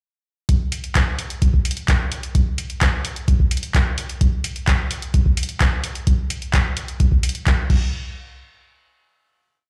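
A deep electronic kick drum sits up front in this short, driving house piece, pounding a four-on-the-floor pulse at 129 BPM in a straight 4/4 feel. Beside it, a punchy analog drum machine supplies programmed closed and half-open hi-hats, a handclap on the backbeat and crash cymbals, its tape-warm tone set well below the kick. Both parts play together from 0.5 to 7.8 seconds, forming a single gritty groove. Each was re-recorded through a big sound system in a bare, large room, which gives the analog sounds a rough, physical edge and a large studio reverb. A final hit closes the piece, ringing from 7.9 to 9.7 seconds.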